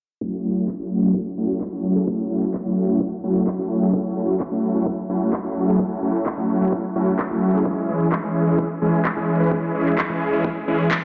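Emotional and anthemic, this festival progressive house excerpt moves at 129 BPM in straight 4/4, in F# minor tuned to A4 = 445 Hz, with a filter sweep running throughout as the harmony shifts from F#m7 to C#m/E at 7.7 seconds. Huge, detuned supersaw chords sit up front with a fast attack and a bright, sustained sheen, shaped by sidechain pumping, a low-pass filter and dub echo. Beneath them, a punchy, high-pass-filtered electronic kick stays in the background, layered electronic handclaps join at 0.7 seconds, and the whole mix rings through a lush hall reverb, sounding as if played on a big sound system in a bare room, with its top end capped at 10.3 kHz.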